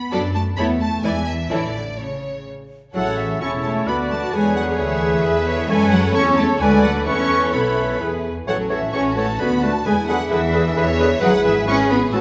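A resonant recital-hall reverb surrounds this lively, cheerful excerpt from a quick classical-period movement in A major, moving in 3/4 at 130 BPM for symphony orchestra. Strings carry it from the start: a background violin section with focused vibrato takes the melody, a lush, expressive second violin section adds portamento above it, a smooth viola section fills the accompaniment, and a close cello section joins a soft-edged, distant double bass section on the bass line. At about 2.9 seconds the winds enter, with an airy flute section, a very quiet clarinet, a mellow bassoon, a solo oboe with light vibrato and a clear, tight French horn section holding sustained chords in the background.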